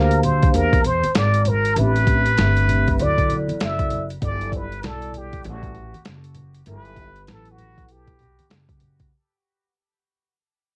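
This smooth, cool jazz-hop excerpt opens on a plunger-muted trumpet carrying the melody over soft-mallet vibraphone and pizzicato upright bass, in G major at 98 BPM with a 16th-note swing. The trumpet sounds breathy and whispered, with a soft attack and a wah-wah color that feels intimate yet distant. Both it and the mellow, ringing vibraphone with its slow motor vibrato carry a cassette-tape character, and the vibraphone also sounds band-limited. The upright bass is woody and growly, sitting up front, while a boom bap sampler-style kit, pitched down, compressed and gritty with a thumpy kick and medium-tuned snare, joins at 0.1 seconds alongside a very quiet egg shaker and soft-handed congas. The harmony moves through Bb6, Am9, Dadd9 and Gmaj7 in a dry, home-recorded sound. The whole passage fades out across its nine seconds, with the vibraphone stopping at 8.1 seconds and the trumpet at 8.5 seconds before the rhythm section finishes.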